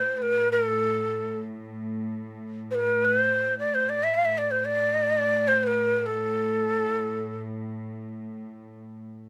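Longing and soulful, this short passage from an Arabic maqam ensemble piece unfolds in free time in A maqam bayati, with a breathy, end-blown ney carrying the melody up front between A4 and F5, its soft attack, vibrato and unsteady reed-cane tone sounding intimate and mellow. Beneath it, a dark chamber cello section sustains a quiet bowed drone on A2 with a gut-string, period-style sound and light vibrato, continuing alone after the ney stops at 7.4 seconds until 9.3 seconds. Close, detailed microphones and light reverb keep the sound clear and personal.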